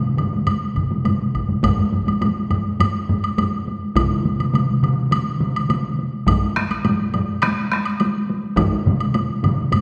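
A straight 4/4 pulse at 104 BPM drives this ceremonial excerpt of Japanese traditional taiko drumming, where a distant solo taiko struck with heavy sticks plays alongside several taiko ensembles, one close, dry and up front under hard sticks, another heavy-sticked and saturated, a third in a small room, and a fourth entering at 0.8 s and stopping at 8.7 s, while a woody, close woodblock clicks through the wet reverb of a recital hall.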